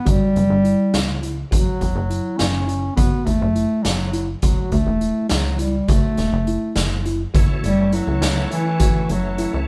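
Progressive instrumental band music in an uneven 5/8 meter, this short excerpt moves at 206 BPM counted in eighths with a straight, driving and intricate feel in F# phrygian. A soft-attacked bass clarinet carries the melody up front in a classical style, taking a solo from 7.3 s as the piece shifts into a new section. Beneath it, a mellow tine electric piano played through its built-in speakers traces quiet arpeggios colored by a phaser, while a punchy, funky analog bass with a plucky, fast-attack, decaying filter snap anchors the low end. A street-band drum kit sits prominently with an airy, polished sound, a medium-tuned snare and a boomy kick on hi-hat, kick and snare. At 7.3 s a bright, shouting tonewheel organ joins underneath with key click, chorus vibrato and a slow rotary speaker. The chords move from Gmaj7(no3) through F#m7 and Esus4 back to F#m7, and the band sounds as if playing live together in a moderately reverberant studio room.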